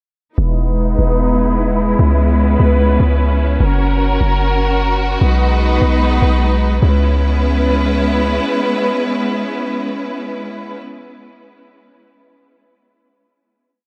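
A light studio reverb gives this short, complete hip hop piece a spacious, melancholic air, set in atmospheric cloud-rap style at 149 BPM in a half-time 4/4 feel, in C# dorian with tuning at A4 = 443 Hz. A lush, bowed symphonic string section holds sustained chords with vibrato, its clear, focused tone sitting up front yet sounding distant, and a low-pass filter sweep runs across it through the opening breakdown until 6.8 seconds. Beneath it, an 808-style bass plays long sub-bass notes with a deep, boomy sine body, a noise layer, a fast attack and a decaying tail, also placed up front. The harmony moves through Emaj7, C#m7, F# and B6 before settling on a final C#m7 chord at 6.8 seconds. The bass drops away at 8.4 seconds, leaving the strings to ring alone until 10.8 seconds.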